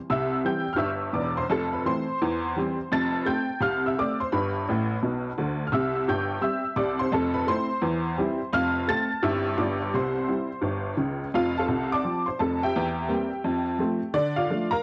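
A home cassette recording with light studio reverb captures a playful, swinging stride-jazz excerpt played by a solo honky-tonk upright piano, detuned, jangly, bright, vintage and up front, that moves through its harmonies with a fill at 4.7 seconds before turning to a new section at 11.3 seconds.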